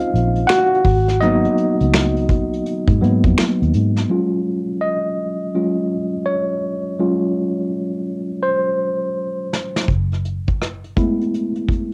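A swung 83 BPM groove in 4/4 opens this sultry, soulful neo-soul R&B excerpt in Eb minor, with a dark, smooth brush kit of snaps, hi-hat, tight kick, rim click and snare alongside a round, foam-muted electric bass. Around 4 seconds both drop out, while the up-front tine electric piano carries on with the solo it has played from the start, over rich minor ninth and eleventh chords. Its tone is worn, lightly overdriven and slightly out of tune, as if heard through built-in speakers. The drums return at 9.5 seconds and the bass at 9.9, all wrapped in the cassette-tape character of the home recording and light reverb that give it a homemade, intimate feel.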